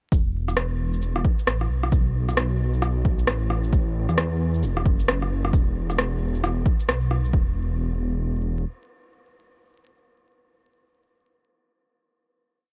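A dry, close sound with a layer of vinyl crackle sets a nocturnal, ghostly mood for this short future garage piece at 133 BPM, swung on the sixteenths. A punchy, muffled two-step kick and a skittering shuffle of electronic shaker and rim click sit up front, while a menacing, detuned saw bass between E1 and E2 pumps against the kick and stretches into long, gliding notes with an evolving filter swell. The beat drops out at 7.3 seconds, and the bass holds on until 8.6 seconds before the piece closes at 10.9 seconds.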